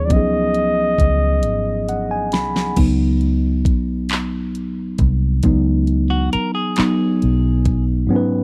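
Slow, late-night six-eight R&B with a sultry feel, cut from a longer piece, where a breathy, whispered flugelhorn carries the melody up front for the first 2.3 seconds over a C#9sus4 chord on worn, slightly out-of-tune tine electric piano, a dark, foam-muted fingered electric bass and a smooth electronic drum kit with a knocking kick, fat snare, hi-hat, handclaps and crash, before a drum fill and piano fill lead into an electric piano solo from 2.8 seconds, joined at 6.1 seconds by a warm, compressed clean electric guitar line, all in a dry, close 1970s-style studio sound with digital ambience.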